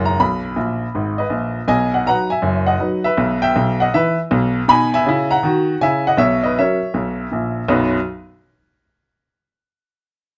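Stride jazz in B major, exuberant and swinging at 160 BPM in 4/4 with a 65% swing on the eighth notes. A lone upright piano carries the whole piece, clear, woody and intimate with audible action noise, sitting up front in a moderate studio reverb, with a fill from 0.6 to 1.7 seconds before the harmony moves through Em/B, E/B and F#7/B over a B bass and returns home to B at 7.7 seconds. The top end is rolled off above 7.6 kHz, and the clip is cut from a longer performance.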